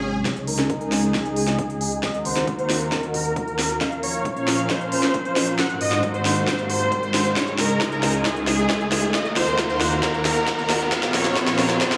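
Uplifting trance at 135 BPM in Db major, this soaring build-up cut from a longer piece sets a huge, detuned supersaw melody under a filter sweep with sidechain pumping and analog delay over a lush, warbling unison pad of sustained chords, while an up-front techno kit of cracking snare and smooth hats plays a fill from 0.3 seconds beside a very quiet, punchy electronic kick, and a background swell and riser lift the dreamy, plate-reverb-soaked mix through a Dbsus2, Ebm, Bbm, Ab7 progression.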